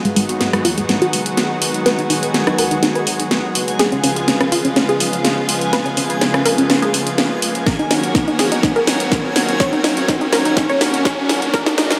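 Dreamy and emotional, this progressive house build-up is cut from a longer piece and rests on a thick, bright, detuned sawtooth pad with chorus and sidechain pumping, moving through Abm7, Db7 and Ebm7 beneath a mellow pluck arpeggio that carries delay and a filter sweep. An up-front house kit with a cracking snare, rim clicks and pumping hi-hats plays a fill throughout over a very quiet, round sine-and-triangle bass, while a reversed granular swell sits in the background and a faint electronic riser enters at 3.3 s. A punchy, tape-tinged kick joins at 7.7 s, and the mix is bathed in a huge ambient reverb.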